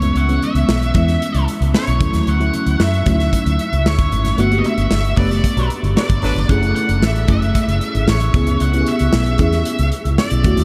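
A dark, fuzzed-out electric lead guitar with an octave-fuzz edge carries the melody from 0.0 s, picked high between C#5 and F#5 across this glossy, urban slice of polished 1980s jazz-funk pop at 114 BPM in a straight 4/4. Beneath it, a lush FM electric piano layered with a soft pad supplies dreamy, full-bodied chords through tremolo and subtle chorus, moving from C#m7 through Dmaj7, Gmaj9 and F#m9 before returning to C#m7. A foam-muted, round fingered electric bass sits up front and carries the most weight of the band, while a modern studio kit with a tight kick and medium-tuned snare keeps time on hi-hat, kick and snare, and very quiet, thin-skinned congas add hard-handed color far down in the mix. A band accent lands at 4.4 s, and at 5.2 s a mellow, tightly voiced horn section with light vibrato slips in behind everything as a second line before dropping out at 6.4 s. The whole cut is soaked in a huge ambient reverb that gives it a dreamy, floating gloss, and the piece breaks off at 10.6 s as a fragment of a longer performance.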